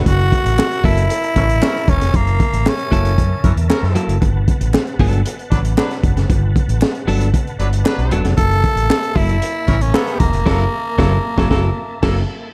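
Dark, small-room funk with a driving, sly feel, cut from a longer piece: a crunchy breakbeat kit with a punchy kick and high-tuned snare sits up front beside an amped, overdriven fingered electric bass, while a compressed clean electric guitar bathed in spring reverb plays accompaniment, a tonewheel organ with a touch of drive, chorus vibrato and slow rotary speaker holds chords in the background, and crisp, close group handclaps add percussion. A clear, tight horn section joins at 1.4 s for a second line, and a gritty, raspy tenor saxophone carries the melody before returning at 8.4 s, with a band accent leading into a brief silence at 12.0 s.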